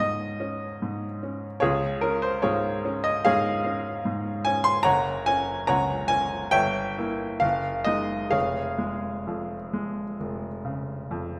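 Passionate and hopeful, this short excerpt from a romantic classical character piece for solo piano unfolds in Db major with rubato at 64-76 BPM, its clear, natural, up-front baby grand spanning F1 to C6 with short sustain inside a moderate concert hall reverb, moving from Db through Gb5, Gdim7 and Ab5/Gb to Db/F across 11.4 seconds.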